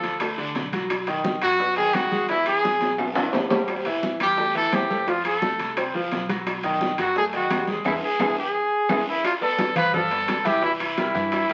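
An up-front solo trumpet with vibrato carries the melody over a brilliant, polished grand piano in this danceable, driving salsa fragment at 173 BPM, while a dark, thumpy pizzicato upright bass sits in the background. Round low-tuned bongos, damped congas, a raspy guiro, distant ringing timbales and very quiet woody claves fill out the percussion, with drum fills at 2.8 s and 7.9 s, the latter joined by a full-band accent. The whole sound carries the crackle of a very old 78 rpm record and a wet studio reverb.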